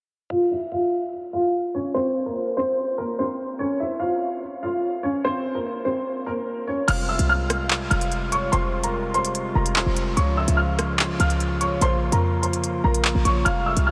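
Drill hip hop in a half-time feel, this tense, menacing passage is cut from a longer piece and bathed in a huge ambient reverb that makes the mix dreamy and soaked. A dark upright piano opens alone at 0.3 seconds, carrying the melody up front with a woody, intimate tone, audible action noise and short sustain, colored by lush chorus, delay and a low-pass filter that sweeps across its opening stretch. At 6.9 seconds the rest of the band arrives: a pipe organ on foundation stops lays down thick, romantically voiced sustained chords underneath. A short 808-style bass sits up front with a punchy, tight sine tone, a noise layer, a fast attack and a decaying tail. The electronic drill kit brings crisp hi-hats, handclaps, rim clicks and crash cymbal, with overdrive adding grit, and the full arrangement runs on to 13.9 seconds over a brooding minor progression.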